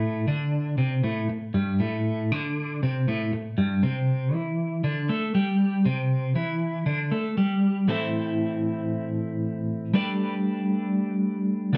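A bright, twangy twelve-string electric guitar sits up front, clean, picked and compressed, carrying this trippy, mysterious rock fragment unaccompanied at 118 BPM in straight 4/4, in A minor with tuning at A4 = 439 Hz. Harmonic tremolo and slapback echo colour its tone, and a moderate echo chamber reverb gives the space some depth. The harmony moves from Am to C5, then shifts at 7.9 seconds to a new section that returns to Am before settling on Gadd9 near the cut at 11.8 seconds.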